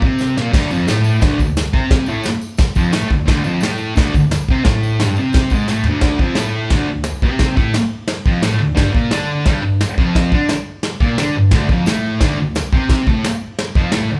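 A thick, bright, double-tracked fuzz guitar riff drives this raw, rowdy garage rock excerpt at 175 BPM in straight 4/4, shifting from D5 to G5 at 8.8 s before returning to D5, while an up-front, airy, polished brushed drum kit with a punchy kick plays a fill at 5.7 s leading into a new section at 6.0 s, and a jingly tambourine sits in the background, all captured as a band playing live in one room with a moderate large studio reverb.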